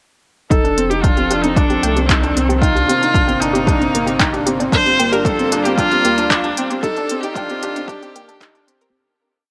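Piano and strings electronica at 114 BPM in 4/4, this short, complete piece feels moving and hypnotic, building steadily from 0.5 s through a chord cycle of F7, Cm7, Gm7 and Ebmaj7. Up front, a rich, focused solo viola carries an arch-shaped motif melody with vibrato through a low-pass filter, while a felt-muted upright piano repeats a soft, intimate ostinato riff with audible action noise and delay. Behind them, a con sordino string quartet holds dark, veiled chords that pump with the sidechain as a filter sweep runs across them. A lush, detuned sawtooth pluck cycles a 6-step sequence that drifts against the bar, and a round sine sub bass plays long gliding notes. A punchy four-on-the-floor electronic kick and a restrained deep house kit of smooth closed hats and handclaps drive the pulse in light digital reverb. A fade-out begins at 6.1 s, and the kick stops at 8.5 s, shortly before the other parts end.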